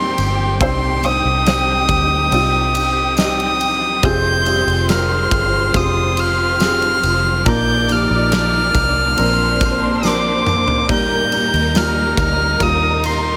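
A solo violin sings a high, floating melody up front in this heartfelt, hopeful pop ballad in Eb major at 70 BPM, joined from the start by a distant, lush symphonic violin section on a second line, a felt-muted upright piano with audible action noise, a close studio string section holding sustained chords in the background, and a dark, round fingered electric bass. At 0.2 seconds a huge arena drum kit with punchy kick and bright cymbals enters alongside a very quiet, jingly tambourine. The progression moves from Cm through Bbadd9 home to Eb, with a drum fill at 10.0 seconds leading into the Eb arrival. A light reverb and small room ambience frame this excerpt from a longer piece.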